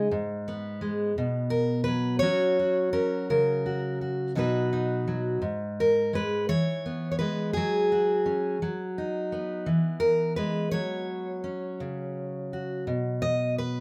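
A moderate studio reverb surrounds a bright, full-bodied jumbo steel-string acoustic guitar that sits up front, with finger squeak audible as it is fingerpicked alone through this 13.8-second cut from a longer folk piece. In a pastoral, nostalgic mood, it moves at 56 BPM in a straight 6/8 in B major, tuned to A4 = 438 Hz, spanning G#2 to D#5. The harmony opens on G#m and passes through F#, B and E before settling on B5 at 12.9 seconds.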